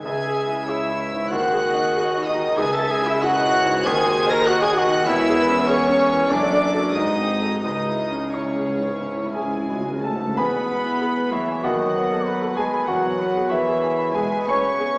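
A rubato 4/4 pulse at 85-100 BPM carries this tragic, brooding romantic excerpt for piano and orchestra, where an up-front, natural grand piano and close, floating sul tasto symphonic violins share the melody in C# minor before turning to E major at 10.4 s, while clarinet, distant cor anglais, a very quiet flute ensemble and background studio violins add second lines, dark woody violas accompany, a tight, very quiet French horn section holds chords, cellos and a distant double bass section supply the bass, and hard-mallet timpani strike in the background with a fill from 7.6 s, all set in a wet recital hall with a small-speaker sound.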